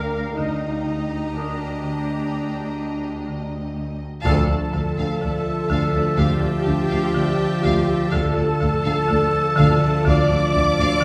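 Heard from further back on a wet scoring stage, this ominous, uneasy suspense film score cut from a longer piece rests on a woody, buzzing marimba with hard mallets playing a dry riff over bowed cello and double bass sections. A clear studio violin section carries the melody above a rich viola section in the background, while a bright, evolving wavetable pad with phaser holds sustained chords and a ringing concert harp adds faint texture. At 4.2 seconds a roomy solo clarinet and a lush symphonic violin section enter with second lines, a mellow French horn section adds sustained chords, and the whole band accents the chord change at 4.3 seconds.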